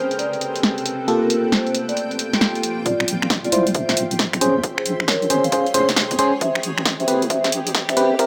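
A lightly reverberant, late-night stretch of skippy two-step UK garage, where a glassy, bell-like FM electric piano plays chorused, delayed stabs and a ringing, close-miked vibraphone carries the melody over a smooth detuned analog pad and a blurred, evolving granular cloud pad, while a punchy analog drum machine keeps finger snaps, hi-hat and an up-front snare going throughout; a deep, dark wobble bass and a background electronic kick join at 2.9 seconds to open a build-up as a filter sweep moves across the electric piano.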